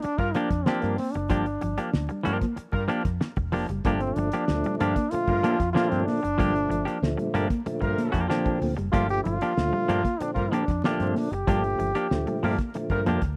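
A dry, rough home-demo sound with vinyl crackle frames this hypnotic 94 BPM funk groove in G minor, where a clear, forceful jazz-style trombone with scooped notes leads up front over a hollow-bodied semi-hollow electric guitar, a dark clean electric guitar riff with analog chorus in the background, a foam-muted fingered electric bass, a cloth-damped thuddy drum kit with a fat snare and tight kick, a distant mellow horn section with analog delay, and an overdriven tonewheel organ with fast rotary speaker and key click that adds stabs from 3.8 seconds, all resting on a single Gm7 chord in a fragment cut from a longer piece.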